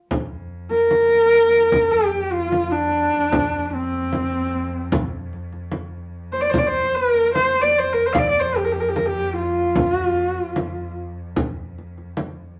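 This Mongolian folk piece, cut from a longer work, has a proud, galloping mood in a straight four. A rich, focused bowed cello holds a distant drone on F2 beneath a deep, close and dry frame drum struck with hard hands, both sounding from 0.1 seconds. From 0.7 seconds a single bowed horsehead fiddle carries the melody up front, its husky, woody tone shaped by vibrato and portamento, all set in a moderate club reverb.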